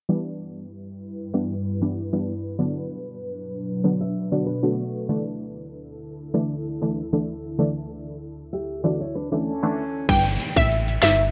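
Dancehall at 96 BPM with a sultry, hypnotic mood, this short cut opens on warbling, detuned chord stabs with chorus and an ethereal, airy pad under a filter sweep, moving through G6, Bm and Dsus2, while a full-bodied nylon-string guitar enters at 4.0 seconds with fingerpicked arpeggios and audible finger squeak. At 10.1 seconds the groove drops in: an overdriven island pop drum kit with a tight kick, sharp snare and smooth hats, a round FM bass, and a crystalline wavetable pluck melody with chorus and digital delay, as a downlifter sinks into the background. Light reverb and a low-pass filter give the whole a soft digital ambience.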